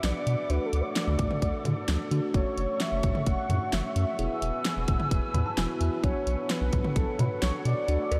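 Synth-pop at 130 BPM in a straight 4/4, this short excerpt cut from a longer piece feels driving yet melancholic, moving through D, F#m, E and Bm. A velvety, detuned synth lead carries the melody with chorus and delay, while a clean tine electric piano, run through a combo amp and a phaser, plays accompaniment and adds a brief fill from 5.1 to 6.0 seconds. Behind them, a large flute ensemble holds airy, distant sustained chords with vibrato. A round, deep analog bass sits up front with a dark, nasal edge, and an electronic pop drum kit with a punchy kick, fat snare, hi-hat, toms and cowbell also sits up front. The whole mix is dreamy and soaked in a huge ambient reverb with a long 8.3-second tail.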